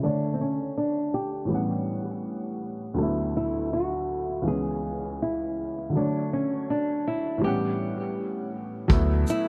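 An echo-heavy, low-pass-filtered mix with light reverb and studio ambience frames this nostalgic, mellow lo-fi hip hop excerpt at 81 BPM in A major, swung on the sixteenths, with a filter sweep running until 8.9 seconds. A small, fingerpicked nylon-string guitar carries the melody through analog delay over a dark, woody upright piano whose worn, slightly detuned tone, audible action noise and cassette-tape colour sit up front, moving through chords such as A13, D69, C#m7 and Dmaj9. At 8.9 seconds a smooth sawtooth-and-triangle synth bass with vibrato and ring modulation sounds a brief D2, while a punchy, rolled-off brush drum kit with hi-hat, kick and shaker joins for the final moments.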